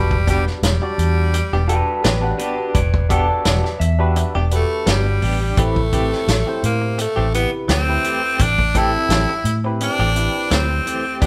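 This recording has the feel of a band playing live together in one large studio, with a moderate reverb around the parts. It is a mournful, brooding piece of straight-eighth soul blues, cut from a longer performance, moving from Em7 to Am7 at 5.6 seconds. A raspy, gritty tenor saxophone carries the melody up front, with a light vibrato and a forceful, edgy pop-style tone. Beneath it, a barky tine electric piano sounds bright through a combo amp with a phaser, while a dark, foam-muted fingered bass gives a round, punchy low end and a tight soul drum kit plays hi-hat, kick and snare with a rolled-off top. A clean, twangy electric guitar, recorded direct and compressed, adds stabs with tremolo in the background, and a second guitar through a small old amp plays a slightly broken-up, lo-fi line from 1.7 to 4.3 seconds.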